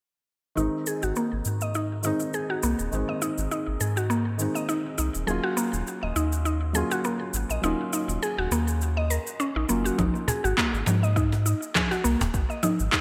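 A swung 4/4 groove at 102 BPM drives this earthy, mystical organic downtempo piece: overdriven electronic cabasa, congas and handclaps with gated reverb sit up front beside a round, sidechain-pumped analog bass, while a woody FM synth pluck spins chorused, delayed arpeggios through a filter sweep and a soft, felt-muted upright piano with pumping delay moves from Ab to Ebm7. The piano drops out at 10.0 seconds as a deep, tape-warm electronic kick enters, and a snappy, close cajon joins at 10.3 seconds, with the mix set in bright 1980s-style digital production and a moderate plate reverb.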